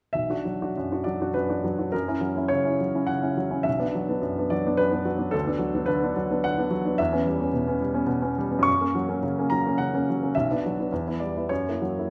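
In a rubato 3/4 that drifts between 88 and 114 BPM, this passionate, stormy romantic character piece in B minor features a solo baby grand piano, intimate and up front with audible action noise and short sustain, ranging from B1 to C#6 across a fragment of a longer work. It moves through Bm, F#7 and C#m7b5/E before turning through Bm, Em and F#7 between 10.3 and 11.5 seconds, all inside the wet bloom of a recital hall.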